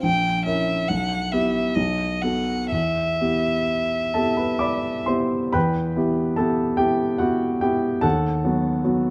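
A rich, bowed violin sings the melody up front, its single player's tone smooth and even with vibrato and a silky top, carrying the line until 5.1 seconds. Beneath it, a warm, vintage-toned grand piano provides the accompaniment, sitting close in the mix and continuing alone to the end at 9.1 seconds. This tender, lyrical classical duo moves in a romantic, rubato 3/4 at roughly 61-75 BPM in E minor, tuned slightly below standard pitch. The harmony passes from a diminished chord through E minor and B7 colours, with a second section arriving partway through. Close, detailed microphones and light reverb give the intimate sound a clear, present quality in this brief passage cut from a longer piece.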